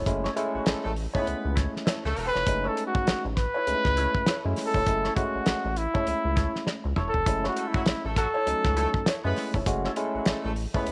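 Driving and sly, this 100 BPM swung funk excerpt in F# dorian rides a thuddy, cloth-damped drum kit with a fat snare and a round analog bass under barky electric piano stabs with slapback echo and a dark hollow-body jazz guitar with wah in the background, while a distant horn section adds a second line at 0.4 seconds and again from 7.6 seconds, a drum fill lands at 6.7 seconds, and an up-front mellow trumpet carries the melody with vibrato and scooped notes from 2.3 to 9.3 seconds in a small, lightly reverberant room.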